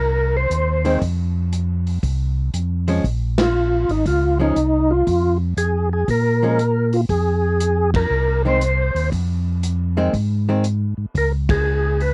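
Bluesy and late-night, this short excerpt from a longer soul jazz organ trio swings in 4/4 with a fat, key-clicking tonewheel organ melody and a round, dark organ bass line, both lightly overdriven through chorus vibrato and a slow rotary speaker. A muffled, lo-fi vintage drum kit with punchy kick, snare, hi-hat and ride joins at 0.5 seconds, and at 0.8 seconds a clean, compressed hollow-body archtop guitar enters with a picked accompaniment until 10.6 seconds, with band accents punctuating a dry, close 1970s-style studio sound.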